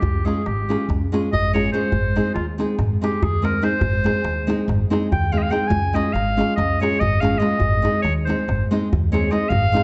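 This is Balkan folk in the manner of a wedding band, with a wild, festive mood and a 9/8 metre in a straight feel. A bright, vintage-toned clarinet carries the melody as an up-front solo for the whole fragment, shaped with a classical touch. A fingerpicked nylon-string guitar joins at 0.2 s with a small, warm, woody sound from old strings, also sitting up front. Pizzicato upright bass on steel strings anchors the low end, while a deep, large clay-shell darbuka with a natural skin head is struck with hard hands, close and dry but set in the background. The harmony moves between Db and Ab, and the whole cut from a longer piece sits in a wet recital-hall reverb with a dark, warm production.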